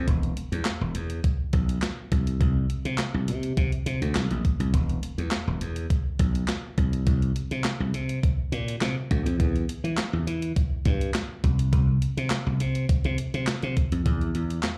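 Slick and late-night, this excerpt of early-eighties boogie funk in E minor sits at a straight 103 BPM, with a bright, growly, punchy slap bass up front from E1 to E3 alongside a clean 12-bit sampler-style drum machine whose thumpy kick, medium-tuned snare, hi-hat and handclaps sit just as forward, all heard as a live gig through the venue's PA with a touch of club reverb.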